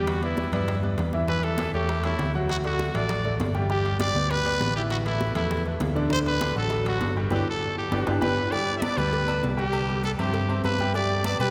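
A fast 4/4 salsa groove carries this festive, danceable excerpt, where a raspy, growling trumpet leads up front over a brilliant grand piano with audible action noise, a dark, round fingered electric bass, and quiet hard-hand congas, bongos with cowbell, and metal-shell timbales with agogo bells in the background, all bathed in a cathedral-like reverb, with a band accent and a drum fill near 8 seconds before the chords move on.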